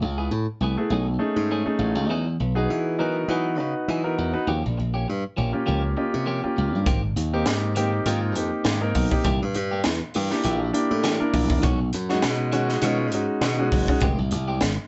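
Recorded live in one room with moderate studio reverb and a soft, rolled-off top end, this funky, slick electric jazz fusion excerpt at 101 BPM with swung sixteenths sets a glassy slap bass up front beneath compressed, picked stabs from a clean electric guitar and an intimate grand piano whose action noise and long sustain carry rich extended chords from Gbm11 through Emaj9 and Abmaj9 to Fm9, the piano playing a fill at 5.7 s before a crisp fusion drum kit with a high-tuned snare, punchy kick and pumping room sound enters at 6.9 s.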